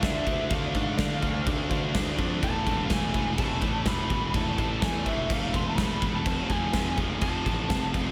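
A big acoustic rock drum kit sits up front in this relentless, aggressive heavy metal excerpt, its tight kick, medium-tuned snare and bright crash cymbals ringing naturally in a big room. Beneath it, a fuzz-laden picked electric bass growls, sounding both direct and amped. Two scooped, high-gain distorted guitars and a crunchy, double-tracked overdriven guitar drive the riff from the background across the full 8.1 seconds. Above them, a dark lead guitar pushed through a small cranked amp carries the overdriven, picked melody between E5 and C6 until 7.9 seconds. The harmony moves from D minor to an A power chord over E and then to F in a straight 4/4 pulse, set in light studio reverb.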